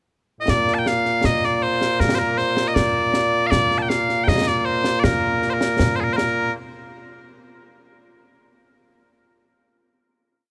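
Stirring and ceremonial, this complete piece of Scottish pipe music moves at 79 BPM in a straight 2/4, set in Bb major. The loud bagpipes carry the melody up front, entering at 0.4 s during a brief pickup bar with a piercing, continuous tone and a modal line full of ornaments that spans from Bb2 to A5. Concert snare drum and concert bass drum join at 0.5 s with a marching snare pattern, their acoustic sound close and dry, topped by bright cymbals. The pipes and drums play through a single section, and the piece closes with a final hit from 6.6 s. Light reverb gives the recording a modest sense of space.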